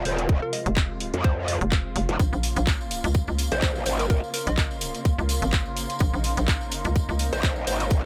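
Gritty and aggressive, this bass house excerpt runs at 126 BPM in 4/4 with a 16th-note swing, moving from F minor to B-flat minor at 2.2 seconds. Up front, a growling, wobbling bass with formant-filtered bite and chorus carries the low end, stepping away at 4.2 seconds before returning at 7.3, while a hollow, bouncy FM bass with tube saturation knocks alongside it. A tight electronic kick sits prominently over a garage kit of handclaps and hats, joined by a jingly, dry tambourine from 2.2 seconds. A detuned square-wave pluck plays a short hollow melody in the background, colored by analog chorus and dub echo. Further back, lush bowed strings hold sustained chords while a moody, warbling sawtooth pad adds texture, both pumping to the sidechain, the strings softened by a low-pass filter and the pad carrying its own reverb in an otherwise dry mix.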